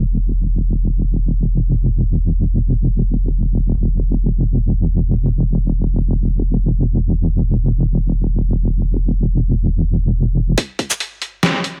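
Deep dubstep in free time, meditative and heavy, cut from a longer piece: a dark, detuned sawtooth-and-sine wobble bass with chorus sits alone and up front in digital ambience with a faint mains hum until 10.6 seconds, when a tight, layered electronic kick with a high-pass filter and a gritty, pitched-down sampler-style trip hop kit of hi-hat, shaker and snare arrive for a brief build-up.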